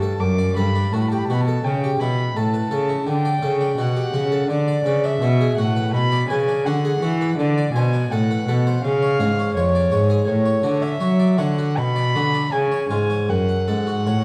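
Baroque-style classical sonata movement with continuo, solemn and grave under a rubato feel, where a distant, nasal gut-string violin carries the melody above a brilliant, plucked French-style harpsichord with octave strings and a rich, reedy cello bass with an airy bow, all three playing throughout the brief excerpt cut from a longer piece and set in a wet recital hall with a dark production.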